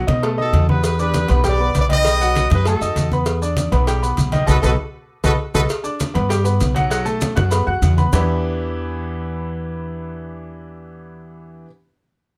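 Fiery and passionate, this salsa excerpt pairs a bright upright piano, present and intimate with audible action noise and long sustain, with a dark, thumpy pizzicato upright bass on gut strings, while low-tuned thick-skinned congas sit in the background beside round cowbell and bongos and grainy, mellow maracas, and a tight, punchy horn section carries the melody up front from 0.4 to 5.6 seconds before a band accent and drum fill lead into a passage where the percussion stops at 8.2 seconds, all wrapped in light reverb.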